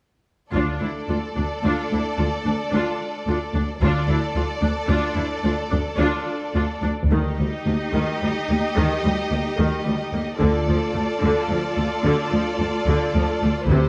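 Dramatic and epic, this cinematic excerpt in a slow 12/8 sets bowed string sections in a dark production on a scoring stage, with a lush violin section carrying a focused second line above an intense, up-front viola accompaniment while the smooth cellos and the rich double basses hold a low D beneath, shifting from D minor to an Eb over D chord as the music builds from 7.1 seconds.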